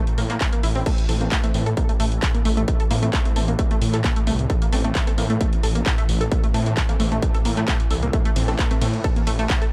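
A swarming, warbling drone and a techno drum kit of crash, ride, hats and handclaps open this short cut from a longer piece of driving peak-time techno, set at 132 BPM in a straight 4/4 and centred on A minor with an A phrygian colour. Within the first half second a tight sequenced synth riff with a filter pluck, chorus, tube saturation and dub echo arrives alongside a thick, beating detuned saw bass, and a distorted electronic kick lands up front at 0.4 s. The mood is dark and hypnotic, with the bass, riff and the hats and cymbals all pumping under sidechain compression. From 1.1 s to 8.9 s an aggressive rave stab with a moving notch, chorus, reverb and analog delay sits in the background, while the granular, very quiet drone keeps evolving underneath. The drums carry the character of a large room, yet the mix as a whole stays dry and echo-heavy, so the menace comes from the saturated synths and the relentless pulse rather than from space.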